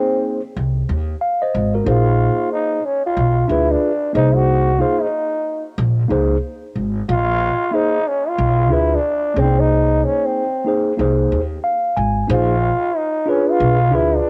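Nocturnal and mellow, this short hip hop passage, cut from a longer piece, moves at 92 BPM in 4/4 with a loose 16th-note swing. A growling trombone carries the jazz-style solo melody, its raspy, gritty tone and soft attack carrying a vintage character through a cassette tape effect. A mellow tine electric piano supplies clean accompaniment through its built-in speakers, also given a cassette tape treatment, and steps forward with a brief fill at 11.3 seconds. From 0.6 seconds a pizzicato upright bass on gut strings adds a woody, thumpy low end, sitting up front with the other two parts. The harmony circles through colours such as Bb9sus4, Ab/C, Bb5 and Bdim7 across two matching sections, and the whole recording has the light reverb and small-room ambience of a home recording on cassette.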